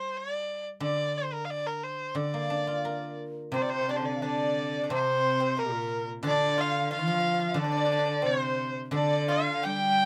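A rubato 2/4 pulse around 89 BPM carries this tender, graceful Chinese traditional chamber piece in D jue mode, where an earthy, biting erhu with light vibrato and portamento sings the melody up front over a ringing, silvery guzheng, joined at 3.5 s by a pure, buzzing bamboo large dizi in the background, a dry, percussive pipa and a focused, distant bowed cello, the whole set in a lightly reverberant room.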